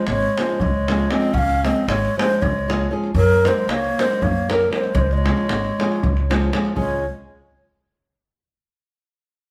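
In a straight 7/8 at 232 BPM counted in eighths, this Balkan wedding-band folk piece in Db major races along with a wild, virtuosic spirit, moving from Db to Gb at 3.1 s and back to Db at 5.0 s. A breathy low ney with vibrato and a soft attack carries the melody close and up front, while a mellow, distant clarinet traces a second line beneath it. A dark, fingerpicked nylon-string guitar with finger squeaks fills in the accompaniment, a woody pizzicato upright bass anchors the low end, and a deep, band-limited davul drives the percussion, all played live together in a large studio room with moderate reverb before this cut from a longer piece ends at about 7 s.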